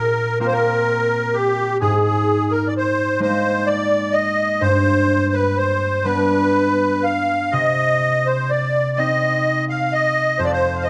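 Worn, warbling cassette tape with a pitch drift and a moderate recital-hall reverb frames this mournful, longing fragment of a Celtic slow air in C minor, moving rubato in 6/8 at about 42 BPM, where a reedy, shimmering musette accordion sings the melody close and up front while a fingerpicked concert harp rings beneath it in accompaniment through chords from Bbsus2 and Absus2 to G and Cm.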